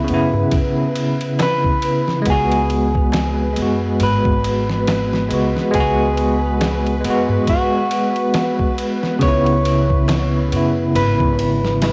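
Trip hop at 69 BPM in C# minor with a swung sixteenth feel, this hypnotic, cinematic excerpt moves from C#m7 to G#m7 and back, with a bell-like tine electric piano up front, carrying tremolo and tape echo, over a dark, slow-attack string machine of cellos in the background and a woody pizzicato upright bass with gut strings and tube saturation. A gritty, compressed sampler-style soul drum kit with a thumpy kick, medium-tuned snare and ride cymbal enters at 0.1 seconds, a crisp metal-shell darbuka played with hard hands sits in the background from 0.3 seconds, and a dark, clean, fingered electric guitar takes the melody with tape echo at 1.4 seconds. Light reverb, a home cassette recording and vinyl crackle give the whole a home-taped, dusty character.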